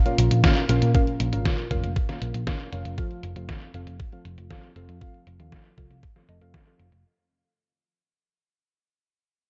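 A dark, round hollow-body electric bass sits up front, its picked, punchy notes carrying this melodramatic, bittersweet slice of italo disco in a straight 4/4 pulse. A thumpy electronic kick shares the foreground, joined by a detuned 8-bit drum machine whose hi-hat and medium-tuned snare are low-pass filtered and have a tape-warm, small-room character. A glossy, full-bodied chorused polysynth adds mellow stabs with fast attacks and sustained tails, built from pulse, sawtooth and square waves with a sub octave and a touch of delay. Filter sweeps move across both the drums and the synth, while the harmony shifts from a minor chord to a major one at 3.0 s. The mix carries light reverb and a soft, rolled-off top, and the whole passage fades out over its 7 seconds as though cut from a longer piece.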